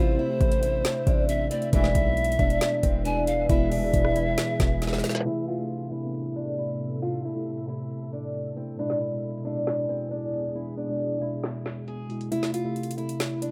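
Brooding, dark trap hip hop in a half-time feel, cut from a longer piece, where a boxy fingerpicked ladder-braced acoustic guitar carries the melody over a mellow phased tine electric piano and an ethereal chorused pad, while a breathy bamboo pan flute with delay adds an early second line and a punchy 808 bass sits low until about 5.0 seconds; a brief smooth brass ensemble stab lands near 1.7 seconds, and up-front trap drums with knocking kick, woody snare and metallic hats play through a filter sweep before the kick drops out at 12.3 seconds, all in a rough, dry home-demo mix.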